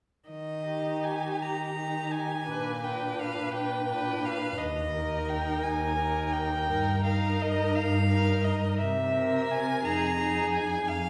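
A reverberant recital hall surrounds this serene, tender passage from a slow romantic movement for string quartet, cut from a longer piece and moving in a rubato 6/8. A single rich, focused violin sings the melody up front from 0.3 seconds, with vibrato, over a cello bass that is both distant and up front, while a second violin joins at 0.7 seconds with an expressive, distant line and a smooth-topped viola fills in the accompaniment. The cello, second violin and viola all shade their bowed phrases with vibrato and portamento, lending the inner and low voices a warm, yielding glow.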